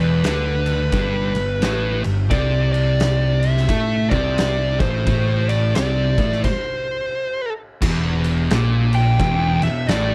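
A compressed, up-front fuzz lead guitar opens this heavy, ominous stoner and doom metal excerpt. Beside it, two thick fuzz guitars play a low riff, one with a warm tone and the other dark and set in the background, along with an overdriven picked bass that sounds bright and growly. An oversized, low-tuned acoustic drum kit joins at 0.2 seconds, its boomy kick, fat snare, crash and ride cymbals coming across gritty and saturated in a big, pumping room. The 4/4 groove carries a loose swing, and the harmony moves from G5 to Amadd11 before settling on Em. A stop arrives at 6.4 seconds, and at 7.8 seconds the lead guitar takes a distorted solo coloured by slapback echo. The mix is dry, with tape saturation thickening the sound.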